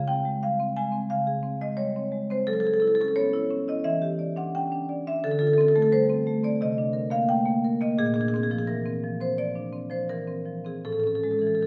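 This is a contemporary classical piece for solo marimba, cut from a longer work, with a flowing, warm mood at 86 BPM in 4/4, played with a rubato feel. The marimba, struck with medium hard mallets, covers a span from A2 to G#5 and sits up front, its tone vintage and band-limited. A stone room adds a reverb of about 1.2 seconds, and the space is heard from further back in the room. The harmony drifts through rich colours, opening on C#maj7#11 and passing through F#m9, Em7, Dm7 and Csus2 before a Bb9 arrives at 8.0 seconds. The passage settles on Amaj7 at 10.9 seconds, shortly before the cut at 11.7 seconds.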